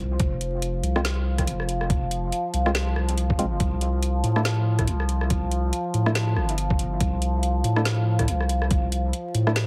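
Dark and heavy, this deep dubstep excerpt moves at 141 BPM in 4/4 with a half-time feel and a swung sixteenth-note lilt. A saturated sub bass, thick and up front, sits under everything from the start, while a resonant drone built from sawtooth and sine tones holds sustained chords with shifting overtones, softened by chorus and its own reverb as the harmony moves from F5 to C5 at 3.6 seconds. At 0.2 seconds the drums arrive: a muffled, thumpy electronic kick, pitched down and overdriven, alongside a layered garage kit with a woody snare, rim clicks and metallic hi-hats. From 1.0 seconds a hollow, organ-like stab adds percussive, decaying hits between Ab3 and F4, treated with chorus and dub echo. The whole mix carries a heavily compressed radio character with vinyl crackle and light reverb, and the fragment is cut from a longer piece.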